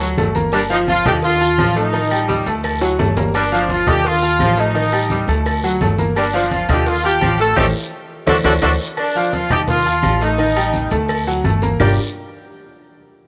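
A clear, up-front horn section carries the melody from 0.5 seconds in this driving, danceable salsa cut in G minor at 170 BPM, while a punchy saxophone section with light vibrato plays a second line in the background until 8.7 seconds. A bright, slightly detuned upright piano with audible action noise accompanies over a dark, pizzicato upright bass, and the percussion brings in low-tuned congas, grainy maracas, tight high-tuned cowbell and bongos, a raspy vintage guiro, ringing timbales and agogo bells, and distant woody claves. A band accent at 7.6 seconds, with a drum fill, leads into a short new section built largely on Eb chords, heard with light reverb and a small room ambience.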